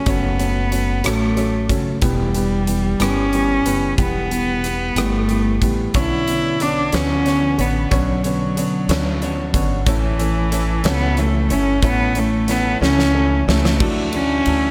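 Swaying and heartfelt, this fragment of a slow 6/8 pop ballad at 61 BPM puts an up-front bowed cello on the melody, with an airy sul tasto tone, light vibrato and tape echo, over growly pizzicato upright bass, a dark, mellow upright piano with audible action noise, and a huge arena drum kit with a fat snare, punchy kick and bright cymbals that plays a fill at 12.8 s, while a clean, direct-recorded electric guitar enters at 5.9 s with compressed arpeggios and subtle chorus in the background, set in light reverb and studio ambience.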